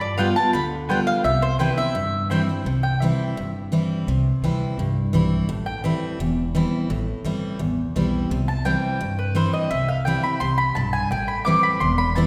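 Set in a church or concert hall with a lush, lingering reverb, this driving, virtuosic bluegrass passage features a bright, full-bodied jumbo steel-string guitar picking the accompaniment up front, over a thumpy, gut-strung upright bass played pizzicato. A double-strung mandolin carries the opening melody until 2.3 seconds, while a second woody mandolin adds picked stabs from 0.2 to 3.5 seconds, briefly again around 6 seconds, and once more from 8.5 seconds to the end. A mandolin solo takes over from 2.7 seconds to the end, over chords moving between G7, C and Am7.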